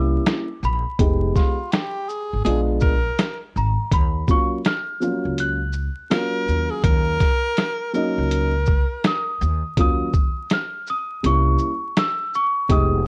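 Jazz-hop with a smoky, nocturnal swing: a worn, bell-like celesta with slapback echo carries the melody over dark, boxy upright piano chords, a growly pizzicato upright bass with transformer saturation and a muffled, pitched-down sampler kit with a thumpy kick, while a breathy subtone tenor saxophone with scooped notes and vibrato adds a second line from 1.4 to 9.4 seconds, all wrapped in warbling cassette tape and vinyl crackle in this short excerpt.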